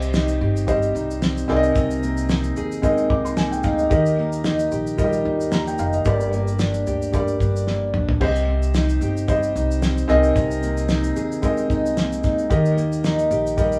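A lightly swung sixteenth-note feel at 112 BPM in 4/4 carries this wistful, tender acoustic pop piece in C minor, cut from a longer performance. A soft, felt-muted upright piano with audible action noise sits up front beside a full-bodied fingerpicked jumbo steel-string guitar, while a woody pizzicato upright bass and a cloth-damped, thuddy drum kit with a fat snare, tight kick and dark cymbals round out the band, the drums playing a short fill at 7.7 seconds. The group sounds like it is playing live together in one room with a wet studio ambience, as the chords move from Cm through Abadd9/C and Eb to Gm and back again.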